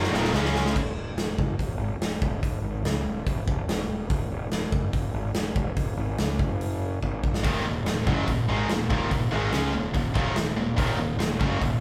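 A drum fill from a big, punchy rock kit with bright cymbals opens this driving, heavy hard rock excerpt in Eb minor at 144 BPM, joined by a growly fuzz bass and three picked guitars (a high-gain one up front, a scooped one very quiet and a hollow-body one double-tracked in the background) that hit Eb5 and Db5 before dropping out at 0.8 seconds, leaving bass and drums to drive on in a large live-sounding room until another fill over an Ebm chord at 7.0 seconds brings the guitar riff back at 7.4 seconds.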